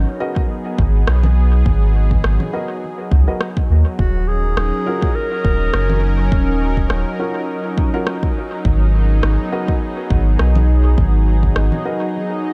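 A round, sine-like sub bass with tube saturation sits up front in this deep, spacious ambient dub fragment in G# minor at 103 BPM, with a gently swung 16th feel, moving from G#m7 to D#m7 and back. A smooth, detuned sawtooth pad with chorus and tremolo holds sustained chords. A dark, woody upright piano with audible action noise places short stabs into dub echo, while a layered, tape-toned electronic kick and echoing electronic rim clicks and congas carry the groove. From 4.0 to 7.7 seconds, a solo clarinet with a smooth top and classical style sings a brief melody through its own dub echo, all set in light digital ambience.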